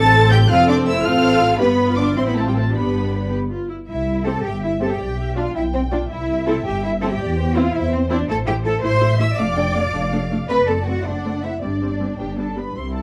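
A quick, cheerful classical-period movement for string orchestra opens with the full ensemble playing together from the first moment. Two violin sections carry the melody and a second line above, violas supply the accompaniment, and cellos and double basses anchor the bass. The music moves at a lively 108 BPM in a straight 6/8 in C major, with every section bowed, lush and shaded with vibrato. The violins have soft attacks and a smooth top, the violas sound focused and close, and the double basses sit up front with an expressive presence. After a short opening phrase over F, G and A minor harmonies, a longer passage begins at 3.9 s and moves from C through G7/B, D minor and D7/F# to a suspended G that settles on G at 12.2 s, shortly before this fragment of a longer piece breaks off. Light reverb and a dark, warm production cushion the strings.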